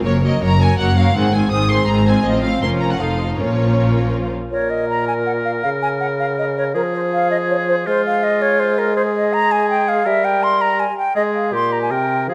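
Urgent and dramatic, this quick classical-period orchestral excerpt in Bb minor at 162 BPM in 3/4 opens with bowed strings, a close, expressive violin melody spanning C5 to Eb6 over a smooth second violin line, rich violas, dark, distant cellos and double basses, before the strings stop around 4.3 seconds and a woodwind passage takes over at 4.5 seconds, a pure flute line sounding above a clear, close-miked oboe and an up-front bassoon, all in a moderate concert hall reverb.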